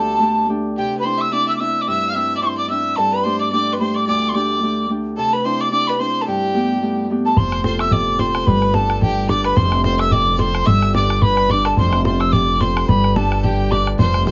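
A swung Celtic reel at 218 BPM in 4/4 and G mixolydian, lively and bright, with a mellow, pure-toned metal tin whistle carrying the melody up front over a clear, earthy bowed fiddle second line and a ringing, fingerpicked Celtic harp accompaniment. At 7.4 seconds a woody, growly pizzicato upright bass and a boomy, close and dry bodhran join as the harmony shifts between F and G chords. Moderate small room reverb and a rounded, softened top end frame this short cut from a longer piece.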